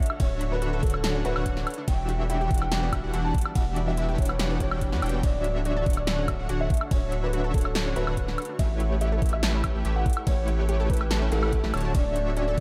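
A bold, detuned sawtooth polysynth riff with chorus and sidechain pumping leads this bright, lush future bass excerpt at 143 BPM in a half-time 4/4 feel in D major, carried by an up-front knocking electronic kick and a thick, saturated sine sub bass, with a punchy snare, metallic hi-hats, ride cymbal and woodblock from a layered dance kit, a dark, boxy grand piano melody through analog delay, a detuned unison pluck arpeggiating in the background with chorus and delay, and a very quiet, ethereal granular pad holding Dmaj7, Em7 and A7 chords, all set in a dreamy hall reverb.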